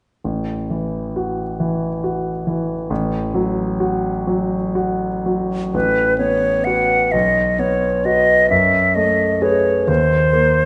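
Impressionist classical music for flute and grand piano, this excerpt drifts in 6/8 at a slow, rubato pace of roughly 39-46 dotted-quarter beats per minute, with a luminous, pastoral mood rooted in A lydian. A concert grand piano opens alone at 0.2 seconds, setting out the accompaniment from deep bass up into the middle register with a clear, natural tone and long sustain. At 5.7 seconds a silver concert flute enters with the melody, and it sits up front and a little louder than the piano. Close-miked, the flute's metallic, airy voice carries vibrato and tongued notes, played with expressive shading. The harmony moves from open A and F#m/A chords into suspended and added-ninth colours, settling on a D#5 near the end. A recital hall reverb adds a wet glow to the duo, and the sound has a soft, rounded top before the music is cut off at 10.7 seconds.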